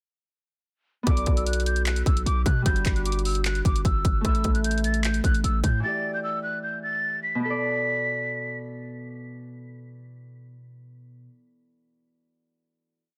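A fingerpicked Celtic harp opens this brief, brooding trap piece at 1.0 s, ringing out held chords in a spread voicing that repeats like a sampled loop and sits softened behind a low-pass filter. Almost at once a breathy jazz flute takes the looping melody high above, its vibrato and lifted highs colored by tape echo and a filtered haze, while a bouncy half-time trap beat hits with a hard-clipped kick, handclaps and bright sixteenth-note hats broken by fast hi-hat rolls. Up front with the drums, a punchy, sine-based 808-style bass carries long sub-bass notes that follow the kick, with a noise layer and a fast attack before each note decays. The beat drops out at 5.7 s and the bass at 5.8 s, leaving the harp and flute to carry on into a melancholic final chord at 7.4 s; the flute drops away at 8.6 s while the harp rings on a little longer. A small room ambience surrounds the parts, and the mix is dense and heavily limited in a modern style.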